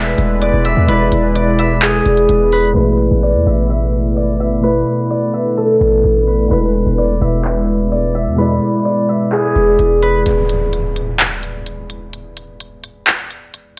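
A fingerpicked concert harp carries the melody up front in this brooding, menacing half-time trap excerpt, its acoustic tone ringing through a low-pass filter. Beneath it, warbly lo-fi synth keys add nostalgic, detuned accompaniment with chorus and a filter sweep, while a deep, dark ambient pad holds sustained chords in the background, its slow-attack sawtooth layers softened by chorus and reverb. A punchy, heavy 808-style bass and a crisp, electronic trap kit with handclaps and hi-hats sit at the front of the mix. By 10.3 seconds the keys, pad and bass have dropped out for a break, and an electronic impact sounds alongside the last harp notes until 12.1 seconds. The drums then carry on alone to 13.8 seconds, with a moderate digital room reverb and low-pass filtering shading the overall sound.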